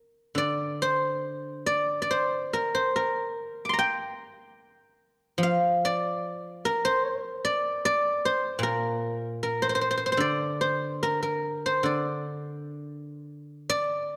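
Elegant and contemplative, this short fragment of traditional Chinese solo music features a lone guzheng played with fingerpicks, its silvery, ringing tone set up front. The performance moves in a free, rubato feel over a 4/4 frame, ranging from Bb2 up to D6. A moderate concert hall reverb and a dark, warm production surround the bright plucked strings for the full 14.2 seconds.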